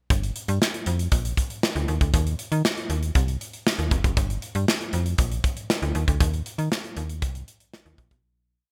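A mid-tempo boogie beat at 118 BPM in straight 4/4 drives this slick, funky early-eighties boogie funk piece in G minor, a short breakdown built from just drums and bass that fades out from 6.2 to 8.2 seconds. The modern studio drum kit, treated with gated reverb, sits up front with a tight kick, a medium-tuned snare and hi-hat, its sound airy and polished, while the slap-like FM bass plays a fat syncopated line with chromatic approach notes, snappy and metallic on the attack before decaying into a mellow tone. The bright, digital 1980s-style production carries a light reverb.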